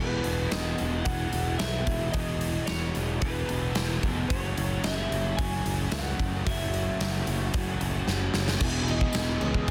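A dense, heavily limited mix set in a small room opens this short cut from a longer shoegaze and dream pop track in E major, moving at 111 BPM with a dreamy, wistful air as the chords drift from Emaj7 to F#m7 and back. A twangy, slightly broken-up lead guitar through a small old amp carries the melody with slapback echo, while a lo-fi garage guitar with reverse reverb and a thick fuzz guitar with ensemble chorus hold down riffs over a growly picked bass and a huge, punchy arena drum kit with bright cymbals that enters at 0.2 seconds. After a drum fill, a bright, double-tracked overdriven guitar with phaser joins at 8.6 seconds, and a jingly tambourine sounds very quietly for a moment at 9.1 seconds.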